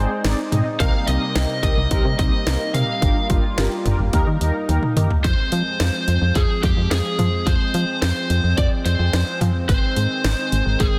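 Synth-pop with a nocturnal, melancholic mood, cut from a longer piece, where an overdriven electric lead guitar from a small cranked amp carries the melody through tape echo and shimmer reverb over a chorused, retro pulse-width pad holding sustained chords. A round, dark FM bass with a fast, decaying attack sits up front beside a punchy, layered electronic house kit with a cracking snare and bright hats, while mellow, detuned synth brass with phaser and vibrato accompanies only until 5.1 seconds. A drum fill at 4.7 seconds leads into the second section, and the dense, heavily limited master carries a light reverb.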